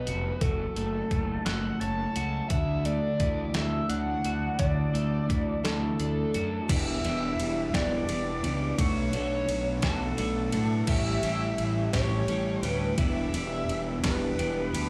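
A bright, twangy twelve-string electric guitar carries the riff through spring reverb and slapback echo, while a gritty, screaming overdriven synth lead sings the melody with phaser, vibrato, slapback echo and analog delay in this moody, bittersweet indie rock piece at 57 BPM in 6/8, set in E dorian. Underneath, a punchy fuzz bass and a thumpy, overdriven 8-bit drum machine sit up front, and a very quiet, shimmering chorused pulse-width pad enters at 2.5 seconds. The sound is that of a live club gig heard through the venue's PA, as chords move from F#m and Dadd9 to Em7, Bm7 and A7 in this section cut from a longer piece.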